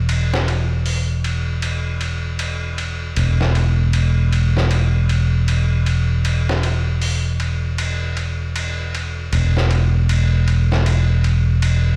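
Smoky and hypnotic, this short trip hop fragment sways at a slow, swung pace in 4/4, cut from a longer piece. A fingered electric bass sits up front with a direct, warm tone reaching down to E1, while a gritty, pitched-down sampler-style drum kit of hi-hat, ride cymbal and medium-tuned snare sits lower in the mix, compressed and tape-warm with high-pass filtering thinning its sound. The drums carry the character of being re-recorded in a small room, and the whole sounds as if played back on a big sound system in a bare space with large studio reverb.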